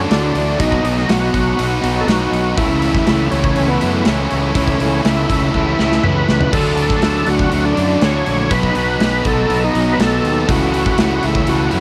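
Confident and swaggering, this 11.8-second classic rock cut at 121 BPM in A major sets a gritty, overdriven tonewheel organ melody with chorus vibrato and a slow rotary speaker over riffs from a bright, double-tracked cranked stack guitar with spring reverb, a distorted electric guitar and a very quiet hollow-bodied semi-hollow guitar, all driven by a fuzz-laden fingered bass and a big-room rock kit with a punchy kick that plays a fill at 5.5 seconds, while a lush sawtooth string machine hovers barely audible beneath chords moving from Dadd9 through B to A/C#.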